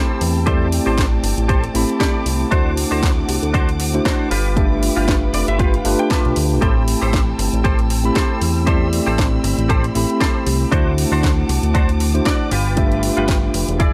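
A fat, up-front analog bass with sawtooth and square-wave tones and a moving notch filter sweep drives this groovy, sensual nu-disco excerpt, entering at 0.2 seconds over a swung sixteenth-note feel. A punchy, overdriven electronic kick joins at 0.5 seconds, layered with a house kit's cracking snare and bright hi-hats, both given overdrive and a small room ambience. A tine electric piano with medium tremolo, sounding through a combo amp, carries the accompaniment with sidechain pumping, a low-pass filter and analog delay, while a rich chamber string section holds bowed, vibrato-laden chords, also with sidechain pumping. A direct-recorded clean electric guitar plays a twangy, scooped riff thickened by ensemble chorus and 12-bit sampler grit, and adds a fill from 5.1 to 6.6 seconds. The harmony cycles through Am7, D7 and G7, and the whole excerpt has a dry, gritty hardware sound with little reverb.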